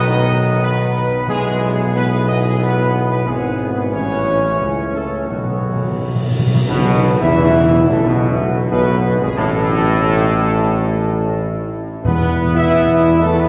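A triumphant, majestic classical fanfare in E major opens at once with the full brass: a dark, soft-edged trumpet section carries the melody over sustained chords from a clear trombone section, touched with light vibrato, and a mellow French horn section set back in the background. Beneath them a close-miked tuba sits up front, giving the bass a warm weight at a stately 90 BPM in straight 4/4. Very quiet timpani with medium mallets on calf heads enter at 1.3 seconds and close the first half with a fill before a band accent at 6.7 seconds launches the second section. Dark cymbals and tam-tam, dry and very quiet, shimmer faintly through the middle of the passage, and the timpani return briefly near the end. The whole ensemble is heard from further back in a cathedral with a long, wet reverb tail, and faint lossy compression artefacts colour the sound of this fragment cut from a longer piece.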